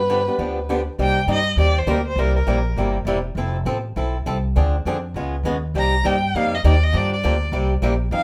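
Swinging and virtuosic, this short excerpt of acoustic string swing in the jazz manouche style races along at 202 BPM in C minor, with an expressive bowed violin singing its vibrato- and portamento-laden melody from 0.0 to 2.9 seconds and again from 5.8 seconds, over a woody pizzicato upright bass and a boxy, picked swing-style acoustic guitar, all set up front in a moderate studio reverb.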